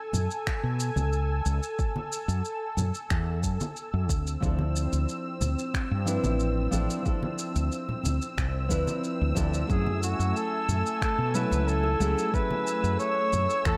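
Warm and smooth, this sunset chillout excerpt moves at an unhurried 91 BPM in a straight 4/4, cut from a longer piece. A lush, detuned sawtooth pad with a warbling chorus holds sustained chords from the start, shifting from F#m9 to Dm9 at 4.1 seconds and back to F#m9, while a round, punchy fretless electric bass with a dark, hollow-body tone sits up front underneath. A soft, tape-warm electronic kick, layered electronic shaker and finger snaps, and compressed congas and bongos played with soft hands in the background fill out the groove. A thumb-plucked nylon-string guitar with fresh strings enters at 4.4 seconds, coloured by tape echo. At 9.7 seconds a distant, roomy flugelhorn takes the solo melody with vibrato and digital delay, sitting up front over a light reverb.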